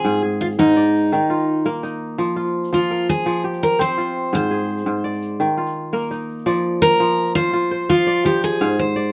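A short, close-sounding cut from a longer piece, set in a modest small room whose reverb gives the strings a gentle halo. This is West African traditional string and xylophone music with a hypnotic, flowing mood in a straight 12/8. A bright, full-bodied picked steel-string acoustic guitar carries the melody up front, while a crisp, ringing kora, also up front, spins fingerpicked arpeggios across a broad register. A grainy, band-limited egg shaker with a vintage edge sits far back in the mix and drops out around 6.4 seconds. From 6.5 seconds the guitar takes a solo over the kora as the harmony keeps circling between Ab, Eb and F chords.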